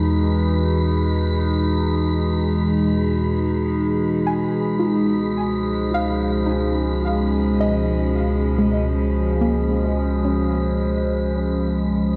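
Bathed in a wet concert-hall reverb, this short ambient excerpt drifts at 54 BPM in 4/4 with a luminous, peaceful mood, moving from Emaj7 to C#7 at 4.5 seconds. Up front, a warbling, nostalgic tape-like pad holds slow-blooming detuned chords through chorus and phaser, while a deep sine sub bass sits beneath and a soft, round pluck with diffuse delay plays dark arpeggios in the background. High above, a breathy, wind-like tuned noise texture fades out across the whole 12.2 seconds.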